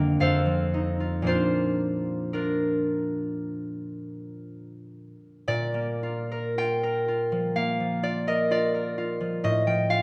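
A bright, ringing concert harp plays alone and up front, fingerpicked across a range from F2 to G5 in this peaceful, dreamy classical excerpt in Bb major. The rubato 4/4 flow sits around 52-65 BPM, moving from F7 to Bb at 1.3 seconds and settling on F/A at 9.4 seconds as the opening idea is stated twice. A moderate recital hall reverb and a dark production surround the acoustic harp.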